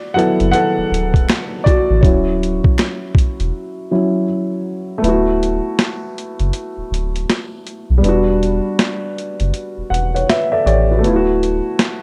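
A dark, woody upright piano with audible action noise and a cassette-tape haze leads this mellow, dreamy lo-fi hip hop passage, cut from a longer piece, at 80 BPM in D major with swung 16ths, over gritty, pitched-down boom bap sampler drums with a thumpy kick and high-tuned snare, a round, deep dub sub bass, and very quiet, close finger snaps from 1.3 to 3.0 s; the kick drops out at 5.0 s, the piano adds a fill at 9.5 s, and the scene sits in a moderate plate reverb with studio ambience.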